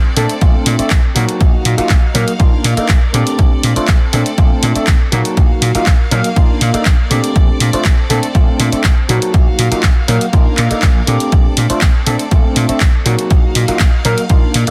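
A straight 4/4 groove at 121 BPM drives this sunny, feel-good filtered disco house cut in Bb major, with an up-front, punchy electronic kick arriving at 0.4 seconds and pounding through to 14.4 seconds. A tape-warm analog drum machine adds handclaps and hi-hat with the roomy sound of a large space, its hats pumping with sidechain, while an amped vintage slap bass holds down the low end from Bb1 to Bb2 with a punchy, pumping bounce. A barky, gritty tine electric piano, overdriven through a combo amp and colored by phaser, fills in the middle as accompaniment, also breathing with sidechain pumping. Behind them, a bright studio violin section sustains biting, intense bowed chords with light vibrato, sitting in the background from the very first moment and pumping along with the groove. The harmony cycles through Bbmaj9, Ebmadd9/Bb and Cm11/Bb, and the dense, heavily limited mix keeps reverb to a minimum in this excerpt from a longer piece.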